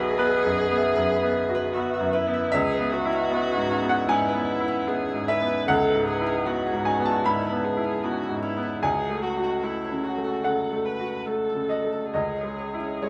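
Melancholic and longing, this neoclassical piece for piano and strings, cut from a longer work, unfolds in C# minor at a rubato 76 BPM in 4/4. A bright baby grand piano carries the accompaniment across a broad span from B1 to B5, its brilliant, open tone sitting up front. A single bowed viola adds rich, smooth vibrato in a narrow band between E4 and B4, its voice even and distant. A concert harp ringing with fingerpicked acoustic arpeggios sparkles from C#4 to B5. Light reverb places all three in a soft space as the harmony drifts from Bsus4 to C#m7 at 2.5 seconds, then through F#m/C# before settling on C# minor at 12.1 seconds.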